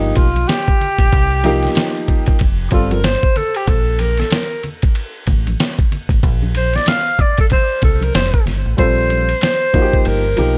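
A mellow alto saxophone solo with vibrato and a soft attack opens this warm, cool jazz-hop excerpt at 94 BPM with a swung 16th feel, over a dark, round fingered electric bass, maracas and congas in the background, and a smooth vintage grand piano that drops out at 3.0 seconds and returns at 8.8 seconds as the harmony moves from G7alt and Cm7 to Bbsus2, while a gritty, compressed sampler-style drum kit with a thumpy kick, fat snare, hi-hat and ride cymbal sits up front from 0.2 seconds.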